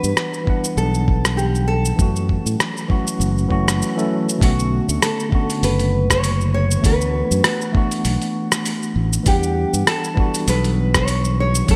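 A swung 4/4 groove at 99 BPM opens this excerpt of relaxed, smooth sunset chillout in B minor, built on a gritty, compressed sampler-style soul kit of cabasa, hi-hat and rim click with gated reverb, joined at 0.5 s by a thumpy electronic kick sitting up front. A growly fingered electric bass with tube saturation anchors the low end, while a worn, slightly out-of-tune tine electric piano, heard through its built-in speakers with delay, carries the chords from Em7 and F#m7 into Bm9 and D69, with a filter sweep on it through the first 4.4 s. On top, a bright, fingerpicked classical nylon-string guitar with audible finger squeak, subtle chorus and delay plays the melody, and the mix sits in a lush hall reverb with a 1980s-style digital production sheen.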